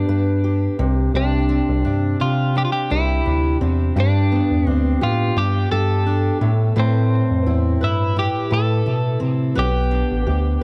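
The recording has a dark, warm production with the intimate feel of a small room, and every instrument sits up front in the mix. This short acoustic pop excerpt, cut from a longer piece, has an easy-going, sunny mood and a relaxed 4/4 pulse with a light swing on the sixteenths. A picked twelve-string electric guitar carries the melody with a compressed, warm, clean tone and a touch of delay, while a fingerpicked steel-string dreadnought acoustic guitar fills out the accompaniment with a full-bodied sound. The bass line comes from a bell-like tine electric piano, bright and direct, sitting a little louder than the two guitars. All three parts play together for the full 10.6 seconds, moving from G to Cadd9 at 0.8 seconds, back to G, through Amadd9 and home to G.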